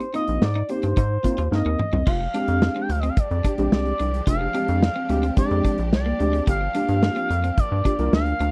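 An up-front, dark studio drum kit with a tight kick drives this danceable, slick early-eighties boogie funk at 109 BPM in F dorian, alongside a worn, slightly out-of-tune tine electric piano with ensemble chorus, a picked, slightly broken-up electric guitar riff, and a smooth sawtooth synth lead melody carrying vibrato, chorus and slapback echo, with a rubbery, bouncy square bass joining from 0.3 seconds, while a lush, distant string section enters with sustained chords at 2.1 seconds after a drum fill, the whole captured in a dry, close 1970s-style studio sound.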